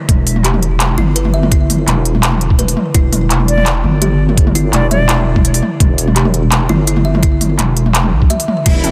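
Spacious and cinematic, this half-time drum and bass excerpt rides on a deep, detuned wobble bass with chorus, a gritty, pitched-down kick and an overdriven kit of crash cymbal, handclaps, smooth hi-hats and toms, while a woody kalimba plays tape-echoed arpeggios. An airy flute adds a brief melody with digital delay from 3.5 to 5.2 seconds. After a short break, a biting string section with 12-bit sampler grit and sidechain pumping arrives at 8.7 seconds alongside a barely audible reversed, granular swell, set in a dense, heavily limited, dry master.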